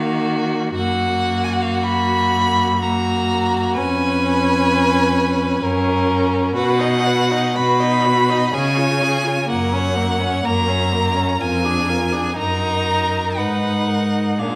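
A reverberant recital-hall sound surrounds this melancholic, solemn excerpt of a slow romantic string-quartet movement in 3/4 at 54-65 BPM with rubato phrasing: a focused, rich first violin sings the melody up front with vibrato, a soft-attacked second violin weaves an expressive line with portamento, a smooth, even viola fills in the accompaniment up close, and a clear cello holds the bass, each part bowed by a single player across all 14.6 seconds over harmonies that open on Ebm and come to rest on Abm.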